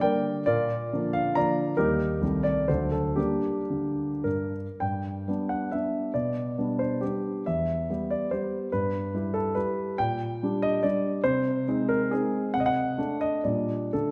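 Dotted rhythms shape this capricious, nostalgic romantic dance in 3/4, played on solo grand piano with a free rubato that lets the tempo range between 97 and 152 BPM. Set in G minor, the music brightens into G major at 4.8 s before turning back to G minor at 10.0 s, ranging from C2 up to Bb5. The warm, up-front piano sits in the lush reverb of a scoring stage, and the passage is cut from a longer piece.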